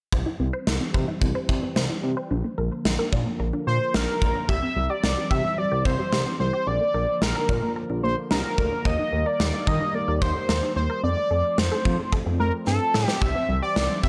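Set in studio reverb, this nostalgic, upbeat synth-pop passage is led by a polished, gated 80s drum kit up front, with a punchy kick and a medium-tuned snare ringing in an airy stone room. A smooth, mellow synth bass built from sawtooth and square waves anchors the low end with a touch of vibrato. In the background, a juicy, squelchy blip pluck plays arpeggios through chorus, phaser and tape echo, while a detuned sawtooth pad sustains evolving chords with a slow attack, a filter swell and chorus. At 3.7 seconds a bold, retro octave-doubled lead enters up front, its bright sawtooth and triangle tones shaped by a filter sweep and coloured with chorus, phaser and vibrato. The harmony moves between C and Bb, then through Eb and F, and a drum fill at 12.7 seconds leads back to C before this section of a longer piece breaks off.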